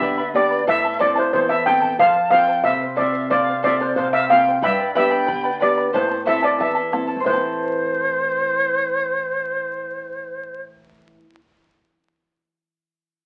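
This Andean folk excerpt for ensemble moves at 91 BPM in a straight 2/4, in A minor, with a mood that is both melancholic and festive. A metallic, airy steel pan carries the melody up front, struck with medium rubber sticks, while a large quena plays a second line beside it with a breathy, reedy tone, crisp chiff on its attacks and vibrato. Underneath, a bright charango with double strings, some octave-doubled, and a full-bodied classical nylon-string guitar are both fingerpicked as accompaniment. A round, close and dry bombo sits in the background and drops out at 7.6 seconds, shortly after the turn to a second section at 7.2 seconds. The harmony moves from G to A minor, F, and back through G to A minor. The whole is bathed in wet studio reverb and has the sound of a very old 78 rpm record, complete with vinyl crackle.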